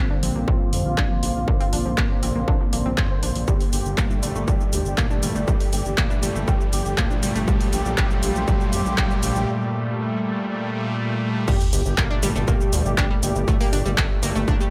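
Over a steady, straight pulse, a distorted, up-front electronic kick and an overdriven analog drum machine with handclaps, hi-hat, shaker and crash drive this dramatic, hypnotic melodic techno excerpt, while a gritty, saturated synth bass and brassy, wave-folded pad stabs pump under the sidechain. Filter sweeps open up the bright, round pluck arpeggios, the thick, nasal unison lead with its dub echo, and the pad through a build-up, over a deep, moody ambient pad, a vintage warbling drone, a lo-fi tape-like texture and a quiet riser and sub drop, all in an echo-heavy chamber reverb. After a break at 9.5 seconds, the drop lands with an impact at 11.5 seconds as the chords move between Bbadd9 and Gmadd9.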